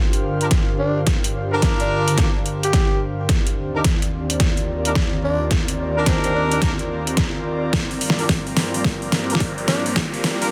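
Glitch hop at 108 BPM in G minor, this swaggering, funky clip from a longer piece swings its sixteenths over a chord movement from Gm7 to Ebmaj7 and back. A warbling, lo-fi pad with a nostalgic, detuned glow holds sustained chords through chorus, phaser and its own reverb, while an airy, breathy second pad adds soft texture, both with sidechain pumping. Up front, a punchy, overdriven electronic kick and a layered dubstep kit with a deep snare and metallic hats drive the groove, and a tight pop-style horn section fires delayed stabs from 0.4 seconds. A gritty, raspy tenor saxophone carries the jazz-style melody with scooped, growling notes, filtered and echoed, as the whole passage unfolds as a build-up with a running drum fill and a filter sweep on the sax. A very quiet electronic riser slips in at 9.0 seconds, and the dense, heavily limited master sits in a light digital ambience.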